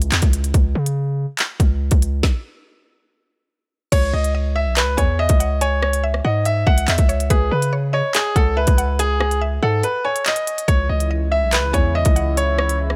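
Cold, dark drill hip hop at 142 BPM in a half-time feel and C# minor, this dry excerpt sets an electronic kit with a hard-clipped kick, woody snare and crisp hats over a punchy, heavy 808-style bass before a bright, polished concert grand piano takes the melody at 3.9 s, joined by a round FM mallet-like pluck with chorus and tape echo in the background, while a smooth, detuned sawtooth pad with chorus and a moving notch arrives at 10.7 s to hold sustained chords.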